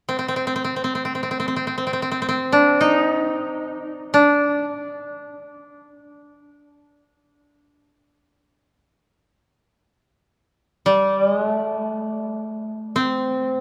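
Unfolding in free time, this short passage from a longer piece of Japanese chamber music has an austere, calm character. A solo koto, plucked with fingerpicks, plays alone from 0.1 to 13.6 seconds, staying within a narrow span from A3 to Eb4. The instrument sounds woody and close, placed up front in the mix. Around it sits a wet church reverb with a 3.7-second decay, casting a long, spacious halo behind the plucked tones. The tuning is set to A4 = 436 Hz, lending the traditional instrument a slightly lowered pitch centre.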